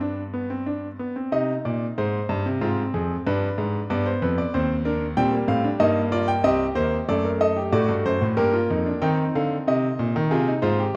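In a straight triple metre, this lively, elegant fragment of a baroque-style four-part fugue is carried by a solo grand piano that sits up front, its clear, smooth, vintage tone resting on a deep bass. The harmony moves through a series of minor-key chords before turning to brighter major ones from 9.0 seconds toward the close. A moderate concert-hall reverb and a dark, warm production frame this passage, which is cut from a longer piece.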